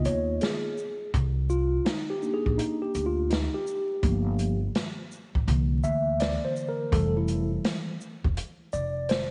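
A lazy 83 BPM groove in 4/4 swings its sixteenth notes, setting a mellow, cool jazz-hop mood in this short cut from a longer hip hop piece. A clean, softly glowing tine electric piano opens at 0.0 s and carries a solo across the whole passage, sounding through its built-in speakers. An upright bass, plucked on steel strings with a woody, thumpy tone, and an open jazz kit with a boomy kick, medium-tuned snare, hi-hat and shaker both enter at 0.1 s. All three parts sit up front, the kit airy and polished in a small room. The harmony drifts from Db13 to Cm9, then through Gm7 and C7 before settling on Fmaj7 at 6.9 s. A moderate echo chamber reverb and a bed of vinyl crackle lend a dusty, rolled-off sheen to the sound.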